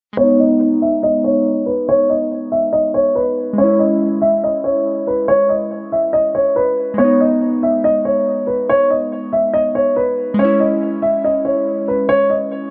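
Set to a half-time hip hop pulse at 141 BPM in G# minor, this dark, ominous excerpt moves slowly between G#m and C#m chords. Glassy digital keys with a sine-like, fast-attack, decaying tone enter at 0.1 seconds as up-front accompaniment, colored by chorus, a low-pass filter and a filter sweep. From 0.2 seconds a dark, mellow concert grand carries the melody in an intimate, boxy, up-front voice, with audible action noise, deep bass, a low-pass filter and digital delay, all in a light reverb.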